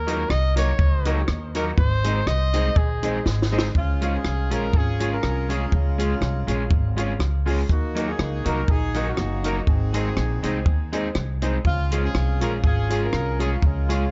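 Ska at 122 BPM in Db major, this bouncy, cheerful cut from a longer piece opens with a scooping, vibrato-laced warm trumpet solo bathed in dub echo and plate reverb; a drum fill at 3.3 s on a dry, natural cocktail kit with a high-tuned snare and punchy kick leads into a mellow, present horn section at 3.8 s, while a woody, growly pizzicato upright bass sits up front beside twangy, slightly broken-up picked electric guitar and smooth, vintage upright piano stabs, both carrying dub echo, all under light reverb and a softly rounded top end.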